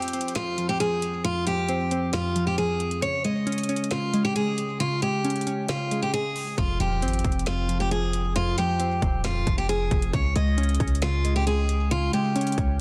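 Dense and heavily limited with light reverb, this eerie, brooding trap excerpt from a longer hip hop piece moves with a half-time feel. Up front, a bright picked steel-string acoustic guitar carries the melody through a low-pass filter and digital delay, with finger squeaks audible in its concert-style tone. Glassy digital keys sit alongside it as accompaniment, their sine-based tone shaped by chorus, phaser, a filter sweep and a low-pass filter, each note striking fast and then decaying. The trap kit has 12-bit sampler grit and tape-like character, pairing a hard-clipped kick with a woody snare and metallic hi-hats. At 6.6 s a punchy, heavy 808-style bass arrives, its sine body edged with a noise layer, while the harmony keeps circling between Fm and Db5.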